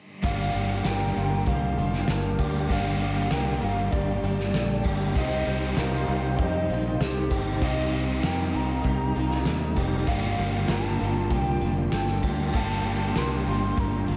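A dreamy, reverb-soaked mix bathes this hazy, brooding shoegaze and dream pop excerpt in G minor, moving at 97 BPM in a straight 4/4 as the harmony shifts from Gm7 to Cm7 and back at 10.1 seconds. A pure, soft sine lead with chorus, delay and vibrato carries the melody over a swirling, phased analog pad, a shimmering fingerpicked twelve-string acoustic guitar with audible finger squeak, and two overdriven electric guitar riffs, one crunchy and dark with reverse reverb sitting in the background, the other picked with subtle chorus. Underneath, a round fingered electric bass and a loose indie drum kit, whose fat snare, punchy kick and hi-hat sit in a pumping room, play throughout.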